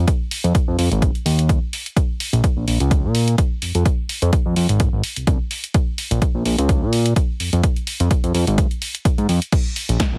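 Nostalgic and groovy, this fragment of filtered disco house rides a swung sixteenth-note feel, with a fat, detuned sawtooth analog bass sitting up front, saturated and pumping against the sidechain as a filter sweep runs across its full length, beside a punchy, tape-warm electronic kick and a quieter analog drum machine whose snare, hi-hat and crash cymbal add snap, the hats and cymbals pumping too, all wrapped in digital ambience and a heavily compressed, radio-like sound.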